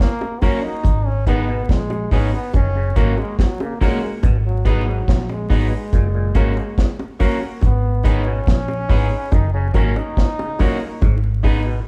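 Light reverb and a layer of vinyl crackle frame this hypnotic, laid-back roots reggae cut, played live by a band in one room, taken from a longer piece and moving at 71 BPM in 4/4 in G# minor. A bright trombone carries the melody as a solo from the opening moment, singing with a light vibrato over a slow sway between F# and G# minor. Up front, a deep reggae drum kit with a tight kick, medium-tuned snare, hi-hat and a rolled-off top anchors the groove alongside a round, punchy, foam-muted electric bass that enters at 0.8 seconds. A slightly broken-up, twangy electric guitar bathed in spring reverb and a brilliant concert grand piano supplying stabs both come in at 0.4 seconds. Deeper in the mix, a stringy auto-wah clav adds arpeggios from 1.3 seconds, while very quiet, high-tuned bongos played with soft hands tap along close and dry.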